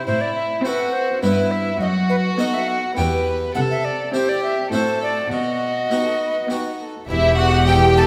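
A driving, dramatic classical baroque-style concerto movement in E minor at 103 BPM in 3/4, where a wooden, chiffy alto recorder carries the melody with a soft-attacked, intimate violin section; an up-front, expressive violin section plays a second line, a full Flemish-style harpsichord and a background viola section fill in the accompaniment, and a focused cello section holds the bass through Am, Em/G, B7/F# and C, with a smooth, even double bass section entering at 7.1 s on the closing Em, the ensemble heard in a wet recital hall reverb.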